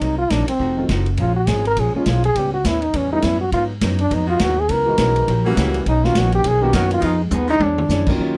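Sultry and swinging, this big band jazz passage is led by a forceful, up-front trombone solo with scooped notes. Beneath it sit a woody, thumpy pizzicato upright bass on gut strings and a distant, roomy drum kit with a punchy kick and rolled-off top, which plays a drum fill at 7.3 seconds. A dark, clean hollow-body archtop guitar sits in the background, an intimate concert grand piano with audible action noise and long sustain joins at 0.8 seconds, and a clear saxophone section adds soft-attack sustained chords from 4.3 seconds, all in a dry mix with little reverb.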